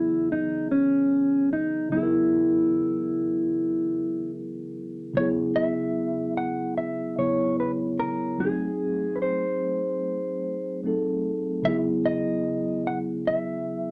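A dark, clean electric guitar carries the melody up front, its fingered, compressed tone giving this short R&B fragment a late-night, introspective mood over a lightly swung 16th-note feel. A mellow tine electric piano supports it throughout with direct, warm chords, moving from C#m7 to a tense G#7b9 at 8.4 seconds before settling on C#m9. Both parts sit in a wet small room, and the piece shifts into a new section at 5.2 seconds.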